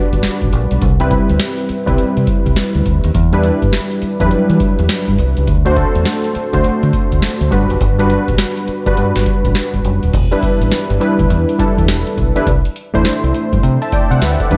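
A dark, lightly reverberant digital ambience frames this flirty, bouncy fragment of new jack swing R&B with a swung sixteenth-note feel, where up-front analog keys of detuned sawtooth and square waves with a sub octave, chorus and a filter sweep add mellow Gmaj7, Cmaj7 and Em7 colour, a round, amped fingered electric bass sits deep below, and a booming analog drum machine, re-recorded in a large room, punches with its deep kick, crisp snare, metallic hi-hats and crash cymbal throughout, carrying on as the harmony shifts to Em7 and C69 at 10.1 seconds.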